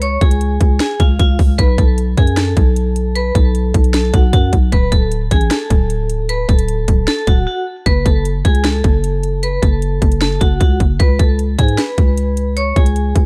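Hard-hitting and eerie, this half-time trap excerpt pairs a ringing, metallic vibraphone melody, struck with hard mallets and softened by a low-pass filter, with a growling, buzzy 808-style bass and an up-front electronic drum kit of hard-clipped kick, sharp snare and metallic hi-hats, all in a dark, dry production that pauses for a brief break at 7.5 seconds.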